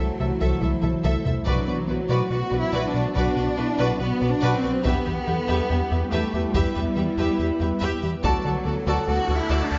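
A concert hall's moderate reverb and a softened, rolled-off top frame this tense, futuristic excerpt from a hybrid orchestral and electronic film score. Lush, vibrato-rich violin and viola sections glide over smooth cellos, a background double bass section and distant French horns, while a round, deep analog bass riff with a wave-folded edge sits beneath an ethereal, chorused pad moving through Am/C, Bm, Em and D. Heavy-stick taiko drums enter at 0.6 s with a fill, and a faint electronic riser arrives at 8.8 s to close the passage.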